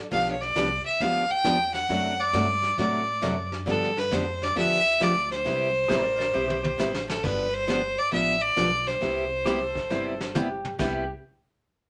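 Playful and swinging, this short western swing cut from a longer country piece moves at 135 BPM in C major, with a lilting swing on the eighth notes. A clear, earthy fiddle carries the melody up front from the start, bowed by a single player with light vibrato, until it drops out at 10.4 seconds. A bright, full-bodied dreadnought acoustic guitar is picked up front as accompaniment, while a woody, thumpy pizzicato upright bass on gut strings sits low and dark beneath it. A vintage kit played with brushes adds a punchy kick, a medium-tuned snare and a rolled-off top, with drum fills leading into each new section. A clean, twangy lap steel sounds a note at the very beginning and returns at 5.9 seconds as a compressed slide counter-line. Chords such as G7, D7/F# and Cmaj7 pass under a moderate studio reverb that keeps the small-band sound intimate.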